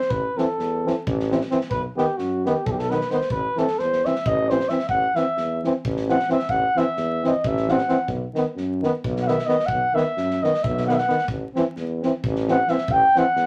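A mellow, smooth-topped flugelhorn carries the melody up front as a solo through this bittersweet, fiery Balkan brass band excerpt, cut from a longer piece in a straight 7/8 at 263 BPM counted in eighths. Set in A Dorian with a raised fourth, the harmony alternates between A minor and B major. A tuba anchors the bass with a warm, roomy tone and light vibrato, sounding distant yet prominent in the mix. The trombone, clear with a gentle vibrato, and a euphonium with its own vibrato fill the accompaniment in a classical style. An acoustic kit adds airy, polished percussion with a punchy kick and medium-tuned snare. A moderate studio ambience and a layer of vinyl crackle surround the band from start to finish.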